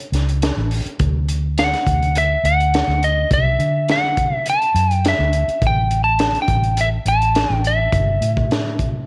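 A straight-eighth groove with a light sixteenth-note swing sets up this laid-back, gritty soul blues excerpt, driven by a crunchy breakbeat kit of hi-hat, punchy kick and high-tuned snare, its saturated, dark sound rolled off at the top. Up front, a vintage foam-muted electric bass, round and amped, sits beneath a lightly driven lead guitar whose picked, slightly broken-up, compressed melody carries the tune over changes from A to D and then, at 5.6 seconds, to an A7 with the third omitted. A light reverb and small room ambience frame the whole performance.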